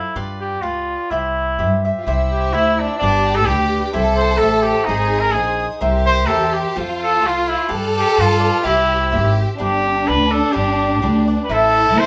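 A clear, classical-style trumpet leads this proud, festive mariachi excerpt at 127 BPM in C major, sitting up front over crisp picked cavaquinho and a woody, thumpy pizzicato upright bass, while a lush studio violin section with expressive vibrato adds a second line from 2.0 s and a biting, earthy chamber violin section holds sustained chords in the background until 9.6 s, the band playing live together in a small, reverberant room.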